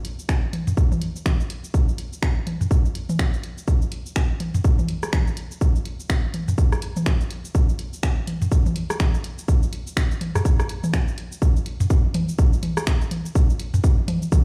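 A swung 4/4 groove at 124 BPM drives this quirky, hypnotic techno excerpt, built from a house drum kit of finger snaps, hi-hat and shaker from the start, joined at 0.3 seconds by a punchy, up-front electronic kick with a tape-warm, layered character. A minimal click kit of rim clicks and toms enters at 0.5 seconds, its overdriven, up-front tone carried by tape echo, while the whole mix sounds as if played on a big sound system in a bare stone room. A drop arrives at 11.4 seconds and runs to the end.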